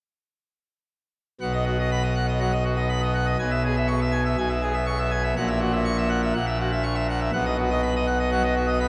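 Set in a straight 4/4 at 122 BPM, this short classical organ toccata in B major is cut from a longer piece and carries a jubilant, brilliant mood. A solo pipe organ on full registration enters at 1.4 seconds and sounds up front, its mixtures giving a majestic, baroque voicing with audible chiff. The part spans from A#1 up to C#6, filling the range from deep bass to bright treble. The harmony moves from B through C#m7/B and F#7/A# before settling back on B at 7.3 seconds. A wet church reverb with a 3.3-second decay surrounds the organ, letting each chord bloom into the space until the playing stops at 8.9 seconds.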